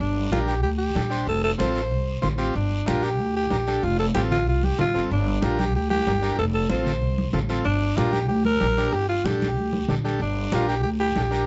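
Passionate and fiery, this cumbia excerpt in G minor moves at a brisk 188 BPM in a straight 4/4, cut from a longer piece. A raspy, gritty alto saxophone carries the melody up front as a solo voice, clear-toned with vibrato and a pop-style delivery, while a woody, bright upright bass with steel strings is plucked pizzicato close alongside it. An overdriven combo organ enters at 0.3 seconds with a vintage, buzzy accompaniment. Behind them, thick-skinned, medium-tuned congas with a band-limited, old-fashioned character join at 0.2 seconds, and a compressed, saturated guiro scrapes quietly in the background. The harmony simply alternates between Gm and F, and the sound is dark at the top with a light reverb around it.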